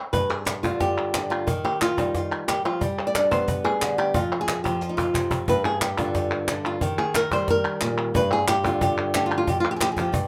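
Drenched in the reverb of a small room, this dramatic, mournful flamenco excerpt puts a fingerpicked acoustic flamenco guitar up front carrying the melody, while a snappy cajon with snares, struck by hard hands, and crisp palmas hand claps drive the straight 4/4 pulse, the cajon breaking into a fill from 4.8 to 5.5 seconds.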